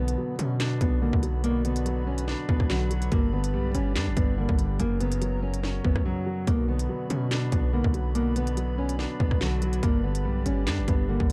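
The recording has a dark, digital ambience, with a thick, clipped low end pressing up front. This tense, half-time drill hip hop cut in B harmonic minor moves at 143 BPM, cycling through Bm, G and F# before returning to Bm and G. A thumb-plucked nylon-string guitar carries the classical-tinged melody through a low-pass filter and delay, while a mellow concert grand piano with deep bass supplies filtered accompaniment underneath. In the background, a hollow, flute-like pad holds soft, detuned chords with a slow attack, long release and chorus. The drill drum kit enters at 0.1 seconds with a hard-clipped kick, sharp snare, crisp hats, handclaps and rim clicks, all with a tape-warm character. Beneath it, an aggressive, saturated 808-style bass with a noise layer hits hard and decays, and a short break from 6.1 to 6.5 seconds interrupts the groove.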